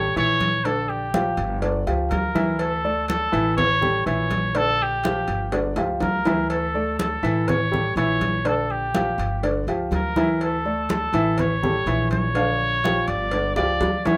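Nostalgic and warm, this brief cut of Cuban son and guajira in D harmonic minor moves at 123 BPM, with a punchy, vintage-toned trumpet singing the melody up front with vibrato over intimate baby grand arpeggios whose action noise is audible, a woody, thumpy pizzicato upright bass, ringing congas played with soft hands, and tight, high-tuned cowbell and bongos that join at 0.2 seconds, all set in a small room with drum fills arriving at 5.5 and 13.6 seconds.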